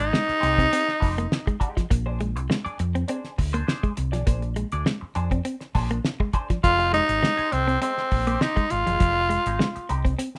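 A raspy, forceful tenor saxophone carries the melody in bursts at 0.0 and again from 6.6 seconds over a driving, sly funk groove built from a cloth-damped, thuddy drum kit with a fat snare, a round hollow-body fingered bass, a clean picked semi-hollow guitar accompaniment through wah and vibrato, and a second fingered semi-hollow guitar riff, all in a rough home demo mix with light reverb, cut from a longer piece.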